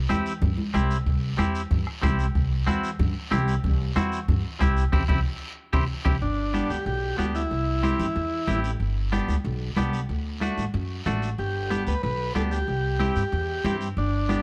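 A straight 4/4 cumbia groove at 186 BPM, festive and danceable, rides on a soft-beaten bombo, thin-skinned congas and a raspy guiro beneath a woody, growly pizzicato upright bass up front and a twangy, picked clean electric guitar; after a drum fill and band accent, the bombo stops at 6.1 seconds and a buzzy vintage combo organ with light vibrato takes the melody from 6.2 seconds, in a dark production with light reverb.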